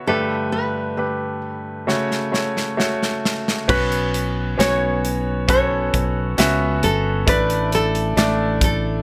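A straight 4/4 pulse at 67 BPM carries this longing, melancholic pop ballad excerpt in B minor, where a full-bodied, fingerpicked nylon-string guitar sings the melody over an intimate grand piano with audible action noise, a polished, punchy studio drum kit enters with a fill at 1.9 seconds, and a round fingered electric bass joins at 3.7 seconds as the chords move from Gadd9 and F#m to Bsus2 and Asus4, framed by light reverb and studio ambience.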